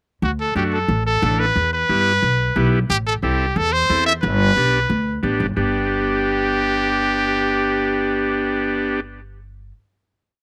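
Dry and open, with an outdoor sound and little reverb, this short, sunny cumbia is a complete piece built for dancing. A brilliant, up-front trumpet carries a pop-style solo of motif-based call phrases over a woody, thumpy pizzicato upright bass on gut strings playing a cumbia figure, while a vintage, reedy combo organ with light vibrato and slapback echo adds rhythmic triad chords. The groove runs until 5.6 seconds, then settles onto a final chord that rings to 8.2 seconds, with the bass lingering to 9.7 seconds.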